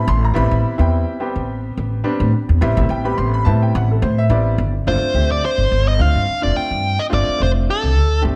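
Lightly reverberant and dusky in its production, this short cut from a longer electric jazz fusion piece has a nocturnal, funky mood, moving at 106 BPM in 4/4 with a gentle 16th-note swing. A clear concert grand piano opens the recording at 0.0 seconds with accompaniment that sounds open and deep in the bass, its notes carrying a short sustain. Almost at once, an upright bass joins up front, plucked pizzicato on gut strings with a woody, thumpy tone. The harmony rests on Am9 before shifting to G9sus4 at 4.9 seconds, where a lead guitar steps forward with the melody. The guitar is electric, picked and smooth, dark with overdrive and a slapback echo, and it rides in the upper register through the closing seconds.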